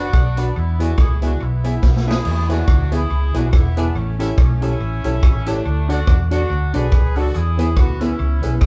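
A swinging 141 BPM ska groove, lilting at 57% on the eighths, bounces along joyfully as the up-front acoustic drum kit, with its punchy kick, medium-tuned snare, rim clicks, hi-hat and crash, fills from 1.8 to 2.3 seconds into the second section, while a dark, round, foam-muted electric bass sits prominently beneath over chords moving from Bm and E to A7, D and E. A woody, slightly detuned upright piano with audible action noise and long sustain punches out intimate stabs, and a clean, hollow-body semi-hollow guitar adds fingered accompaniment in the background. Over them a distant, roomy horn section carries the melody in a pop style with light vibrato, all in a moderate large-studio reverb that gives this short excerpt the feel of a band playing live together.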